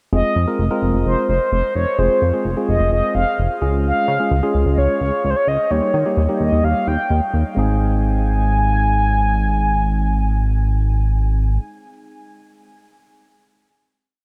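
Synth-pop in Ab major at 129 BPM, this short, complete piece feels upbeat and nostalgic, moving through Fm7, Db and Eb before coming to rest on an Ab chord at 7.6 s. A mellow, horn-like synth lead sits up front carrying a motif-based melody in song phrases, its round, warbling tone shaped by vibrato, chorus and tape echo. A clean tine electric piano supports it with pushed triad chords. Underneath, a glossy, chorused synth bass runs a sequenced line with a plucky filter and the shifting colour of pulse-width modulation. The mix is dreamy and soaked in a huge ambient reverb with a 7.1-second decay, letting the closing chord ring out until the piece ends at 11.6 s.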